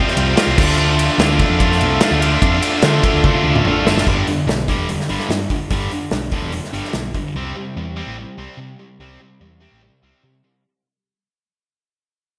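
A straight 4/4 pulse at 146 BPM drives this jangly, upbeat indie rock fragment in C major, where a loose acoustic drum kit with a tight kick and pumping small-room sound sits up front and plays a fill from 3.2 s, a bright, double-tracked high-gain guitar riff with slapback echo runs beside a round, punchy fingered electric bass, and a reedy vintage combo organ with light vibrato holds sustained chords in the background until 4.0 s, the whole mix carried by a big arena-like hall reverb as it fades out from 4.1 s over chords moving from Fsus2/C and Dmadd9 to G and C.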